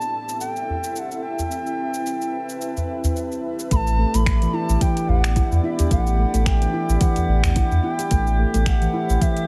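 Meditative and hypnotic, this organic downtempo excerpt moves at 109 BPM in 4/4 with a gentle 16th-note swing, cut from a longer piece and tuned to A4 = 444 Hz. A bright, reedy bansuri carries the melody from the start, its pure bamboo tone shaped by vibrato and tape echo, over an ethereal, airy pad of sustained chords that breathes with sidechain pumping and ensemble chorus. Finger snaps, metallic hats and shaker from an afro-pop drum kit play alongside a glassy texture of drifting overtones in the background, while a small acoustic udu enters at 0.7 seconds. At 3.7 seconds the harmony shifts from Am7 to Gmaj7/A as a ringing, dark handpan arrives with arpeggios through tape echo, joined by a round, up-front sub bass and a deep electronic kick. The chords return to Am7 at 8.1 seconds, and the whole recording sits in light reverb.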